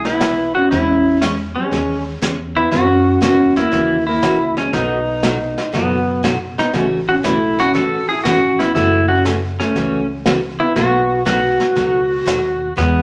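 A twangy, bright pedal steel guitar carries the melody up front with fingerpicks, slide and volume swells, in this playful, swinging western swing excerpt at 120 BPM in 4/4 with a 68% eighth-note swing. Beneath it, a dark, clean hollow-body jazz guitar plays a fingered second line, a woody pizzicato upright bass holds the low end, and a vintage brush drum kit with a punchy kick and rolled-off top keeps time. A full-bodied picked acoustic guitar plays in the background from 0.2 seconds. The band moves through a chord cycle from E and C#m/E through F#7 and B7 to A6 and F#m7, returning to B7, all set in a wet club reverb.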